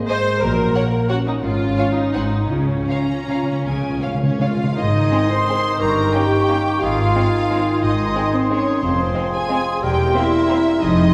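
Classical in an elegant, sweeping 3/4 with a rubato feel at 148-194 BPM: a dark, distant French horn section sustains chords in D-flat major while lush, vibrato-rich violin sections carry the melody and a background second line, over smooth bowed violas, a clear cello section and a focused double bass section. Calf-headed timpani played with medium mallets add a fill from 2.5 s to 4.7 s. At 4.8 s the music moves to A-flat major, where an airy, crisp flute ensemble enters together with a present oboe, a soft-edged clarinet and a mellow, roomy bassoon, all set within the generous reverb of a scoring stage and heard from further back in the room.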